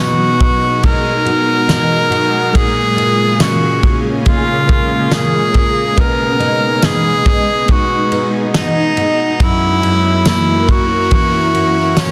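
A dense, heavily limited modern master with light studio reverb frames this dreamy, floating dream pop excerpt at 70 BPM in a straight 4/4, moving through B6, A#m7 and F#7 chords. An up-front, bright tenor saxophone with light vibrato and digital delay carries the melody over a shimmering, ethereal pad treated with chorus and phaser, while a full-bodied, octave-doubled fingerpicked twelve-string acoustic guitar plays arpeggios. A loose indie drum kit with a punchy kick, fat soft-clipped snare, dark ride cymbal and tambourine joins at 0.4 seconds, and a delicate, bell-like celesta adds texture in the background from 6.4 to 9.0 seconds.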